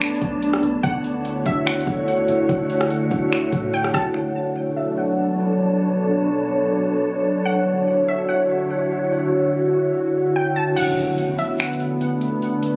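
Captured on a phone in the room, this short cut from a longer atmospheric cloud-rap piece carries a club reverb, a lush hall ambience and compression that lend it a hazy, melancholic air. At 145 BPM in a half-time 4/4 feel in B minor, a glassy, ethereal FM pad sits up front with mellow sustained chords, moving between Bm9 and Dmaj7 under ensemble chorus, its own reverb, sidechain pumping and a low-pass filter. A soft electronic R&B kit with a gentle kick, metallic hats, finger snaps, rim clicks and crash drops out at 4.0 seconds and returns at 10.8 seconds with the kick muted, alongside a background electronic impact. A deep, round 808-style bass hums darkly in the background and stops at 4.1 seconds, while a breathy, wind-like noise texture drifts beneath with its own reverb. Above it all, a warbling, dusty, detuned sawtooth pluck carries the lo-fi melody through chorus, tape echo and a filter sweep.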